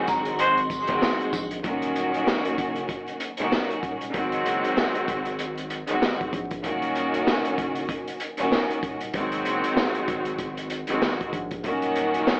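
Dark and moody, this boom-bap hip-hop excerpt moves at 96 BPM in 4/4 with a swung sixteenth feel, sitting in Eb dorian and cycling between Ab7 and Ebm7. A clear, focused studio string section carries the accompaniment from start to finish, bowed with vibrato and placed up front, its tone coloured by cassette tape and filtering. A crunchy breakbeat kit of kick, high-tuned snare and hi-hat drives alongside, gritty and saturated with a punchy kick and a rolled-off top, while a deep, thick sine sub bass holds the low end. The opening moments are busier: a mellow, ringing vibraphone played with soft mallets offers a brief melody, a piping tonewheel organ with key click and chorus vibrato murmurs very quietly, a jingly tambourine joins in, and a tight, vintage trumpet section lands a short jazz-style stab at 0.4 seconds with tape echo. By 1.6 seconds the track settles into its longer section of strings, bass and drums, all framed by light reverb, vinyl crackle and an AM radio tint.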